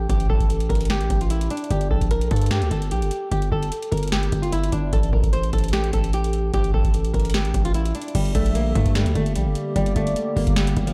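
Set in a light digital ambience, this brooding, menacing trap excerpt moves with a half-time feel: a fingerpicked flamenco guitar carries the melody through analog chorus, delay and a low-pass filter, over a distorted, aggressive 808-style bass that sits heavy and up front. A booming analog drum machine, re-recorded in a large room, hits with a deep kick, crisp snare, metallic hi-hats and crash. At 8.1 seconds a hollow, flute-like pad enters in the background with mellow chorused chords, and at 8.4 seconds a velvety, smooth synth lead with vibrato adds a faint second line.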